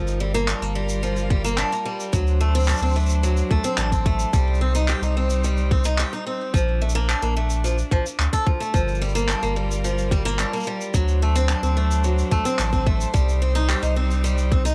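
A clear, distant string quartet holds sustained chords with vibrato and plate reverb alongside a bright, boxy swing-style acoustic guitar picking delayed arpeggios up front, while a round sine sub bass sits deep beneath, a mid-forward shaker and handclaps with a rolled-off top join at 0.1 seconds, and a tight, tape-warmed electronic kick enters at 1.3 seconds in this delicate, autumnal folktronica excerpt moving through Gm7, D7, Cm and Bbmaj7 with finger squeaks audible on the guitar.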